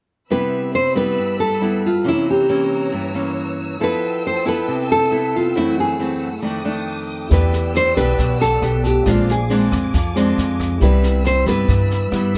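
A fingerpicked nylon-string guitar carries the melody up front with audible finger squeak, over a second fingerpicked nylon-string guitar on fresh strings in this relaxed, romantic bossa nova excerpt in C major at 137 BPM, while a lush, bowed violin section holds sustained chords with a soft attack and vibrato beneath them. At 7.3 s a woody, thumpy pizzicato upright bass arrives up front, along with a brushed drum kit that has an airy, high-tuned snare and boomy kick, a grainy egg shaker in the background, and a concert grand piano adding background accompaniment with deep bass. The chords move from Cmaj7 through rich extended colours such as Fmaj9#11 and Bb9 before returning to Cmaj7, all in light reverb with some lossy compression artefacts.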